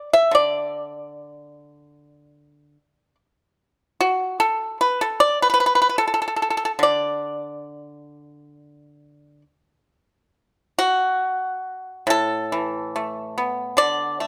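Close, detailed microphones and a light touch of reverb frame this short cut from a longer Chinese traditional piece, an elegant, flowing solo for pipa. Played with fingerpicks, the bright, percussive instrument sits dry and up front, moving freely in rubato across a span from A2 to E5. After the opening passage, a new section arrives at 10.3 seconds and carries the music through to 14.3 seconds.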